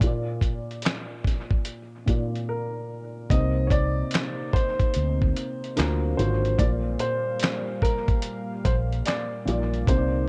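A melancholic, reflective lo-fi hip hop passage, cut from a longer piece, opens with a soft, felt-muted upright piano, with audible action noise, heard through cassette tape, alongside a gritty, compressed sampler-style drum kit of thumpy kick, fat snare, hi-hat and handclaps; a woody upright piano melody with analog delay enters at 2.5 seconds, a round, foam-muted fingered electric bass joins up front at 3.3 seconds, and a detuned, slow-attack analog pad with chorus settles into the background at 3.9 seconds, inside an echo-heavy mix with light reverb.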